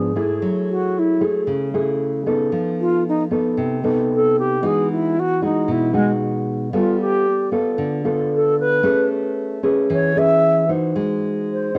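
Intimate and smooth, this short cut from a longer bossa nova piece moves at 114 BPM in a straight 4/4, tuned to A4 = 438 Hz. An up-front, close-miked alto flute carries the melody with a pure, tongued tone and vibrato, while an acoustic nylon-string guitar with fresh strings, thumb-plucked in a classical manner, supplies the accompaniment through rich chords such as F#m9, F7#11, Emaj9 and G9. Both instruments carry a cassette-tape colour, and the home recording sits in a modest booth ambience.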